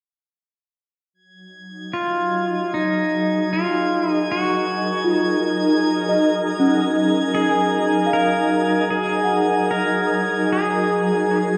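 Heard through worn, warbling cassette tape and a wet concert hall, this weightless ambient fragment at 77 BPM in F# major opens with a faint glass-harmonics texture of drifting glassy overtones at 1.5 s, soon joined by a shimmering, detuned pad of sustained chords up front over a single F#69 chord, a twangy, clean pedal steel guitar melody with delay, and delicate, bell-like celesta arpeggios with delay that enter at 5.0 s.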